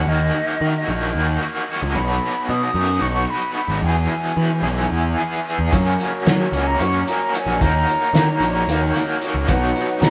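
Set in a lopsided 7/8 with a straight feel, this psychedelic rock excerpt has a hypnotic, hazy pull. A bright, double-tracked garage guitar drives the riff up front with overdrive and tremolo, beside a round, fuzz-soaked picked electric bass. Above them a distant, airy concert flute carries the melody with vibrato and tongued notes. At 5.7 s a muffled, cloth-damped drum kit arrives with a fat snare, tight kick and hi-hat, gritty and rolled off at the top, while a reedy pedal harmonium breathes mellow sustained chords in the background. The harmony drifts through D#m, B, E, F#, D#m7 and Badd9, and the band sounds as if it is playing live together in a stone room with moderate reverb.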